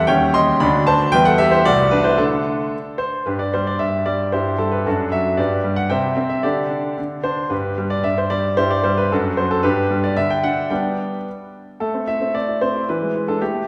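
The music moves in a straight two-beat metre at 113 beats per minute, giving this classical-period piano sonatina a tidy gait. The mood is cheerful and playful, carried entirely by a solo grand piano whose tone is bright and brilliant, placed up front and sounding natural. Its range spans from deep in the bass up into the high treble, and the instrument is tuned with A at 438 Hz. A generous, wet reverb lends the sound the bloom of a church or concert hall. After a brief opening phrase, a longer passage begins at 3.3 seconds, circling around the home chord with simple, open harmonies and a couple of brief pauses in the harmony. At 11.8 seconds the music turns toward a minor chord and ends on a dominant seventh, leaving this fragment of a longer piece poised to continue.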